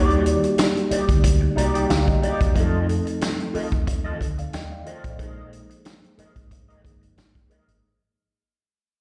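A lightly swung sixteenth-note feel in 4/4 drives this smooth, romantic slice of lush 1970s-style soul, cut from a longer piece and fading out across its full length. A vintage acoustic drum kit of hi-hat, tight kick and medium-tuned snare sits up front with a natural studio-room character, alongside a round, punchy, foam-muted fingered bass that sounds dark and amped. A mellow, clean tine electric piano heard through its built-in speakers carries the accompaniment with slapback echo, and it steps forward with a fill from 1.2 to 2.6 seconds. Lower in the mix, a slightly broken-up, lo-fi electric guitar, picked through a small old amp with wah and slapback echo, plays a riff. The harmony moves from Ebmaj7 to F7 to Bb7sus4, and the performance comes across as a live gig heard through the venue's PA, with light reverb, small room ambience and recital hall reverb.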